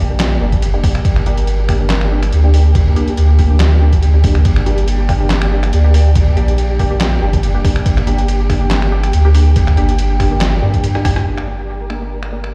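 This heavy, brooding deep dubstep excerpt opens straight into a drop. A soft, round sub bass sits up front beneath a moody analog pad and muted, detuned chord stabs that pluck through a phaser, subtle chorus and dub echo. The pad holds sustained chords in the background with a lush chorus, and a flickering, grainy texture enters at 0.1 s under its own built-in reverb. A trip hop, sampler-style drum kit brings crash cymbal, finger snaps, handclaps, hi-hat, rim click and a medium-tuned snare, all pitched down, muffled, compressed and overdriven. A thumpy electronic kick joins at 0.5 s with the same treatment, and the half-time groove carries a slight swing until a drum fill leads to a band accent at 11.2 s and a brief new section. The mix sounds as if it were played on a big sound system in a bare stone room, dry apart from that room's reverb.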